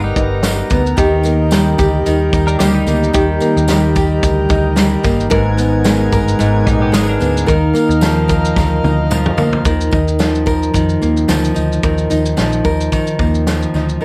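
Acoustic pop with an easy-going, sunny mood, this short excerpt rides a lightly swung sixteenth-note groove. A bright, fingerpicked nylon-string guitar sits up front and carries the accompaniment throughout, while a round, dark hollow-body bass gives the low end a punchy, amped body. A loose indie drum kit with a fat snare and punchy kick comes in at 0.2 seconds, its gritty, saturated tone and rolled-off top keeping it mid-forward, and a jingly tambourine sits in the background. A reedy, breathing pedal harmonium holds mellow sustained chords until 9.6 seconds, and a clean, compressed twelve-string electric guitar adds a picked second line in brief spots near the start and again around 6.7 seconds. A drum fill from 8.6 to 9.7 seconds leads into a new section, and the close, detailed sound with little reverb keeps every part intimate and present.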